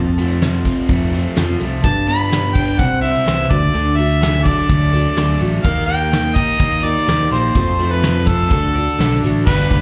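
Open-road and jangly, this short cut from a longer folk rock and heartland rock performance moves at 126 BPM in a straight 4/4, heard as a live gig through the venue's PA with club reverb. A crunchy, overdriven electric guitar, double-tracked and picked, carries the riff from the opening, alongside a punchy, amped fingered bass and a boxy parlour-style steel-string acoustic guitar tucked into the background with slapback echo and audible finger squeak. A soft brush drum kit enters at 0.2 seconds, pairing a fat snare and tight kick with dark cymbals on hi-hat and crash. At 1.8 seconds a clear harmonica takes the solo melody up front, its smooth top, light vibrato and scooped notes colored by slapback echo and analog delay. The chords move from F through G, C, D and E-flat before returning to F and D, and a grainy egg shaker slips in faintly at 9.5 seconds.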